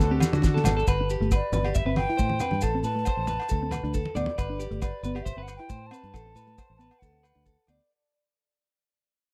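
Danceable and warm, this G major highlife guitar band excerpt at 136 BPM in a dry, close 1970s-style studio sound opens on a brief reedy accordion chord before fading out from 0.9 seconds, with twangy clean electric guitar arpeggios in spring reverb and tape echo, a round, up-front fingered bass, a damped 70s drum kit with a fat snare, dark chorused guitar accompaniment, grainy maracas, ringing agogo bells and bright congas that stop at 4.4 seconds, while an airy, hollow jazz flute carries the melody from 1.4 seconds.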